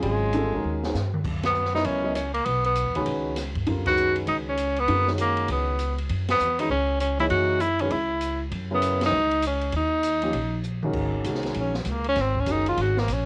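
This home cassette recording with light reverb captures a spiritual, open modal jazz excerpt in F# mixolydian, swinging briskly at 198 BPM in 4/4. An up-front tenor saxophone with light vibrato and a vintage, tape-tinged tone carries the melody over polished, woody upright piano chords, a dark pizzicato upright bass, and an acoustic drum kit with dark cymbals, a high-tuned snare and a boomy kick, while the band hits shared accents over suspended chords. Drum fills at 0.6 and 10.6 seconds set up the changes, and the saxophone steps into a solo at 10.9 seconds.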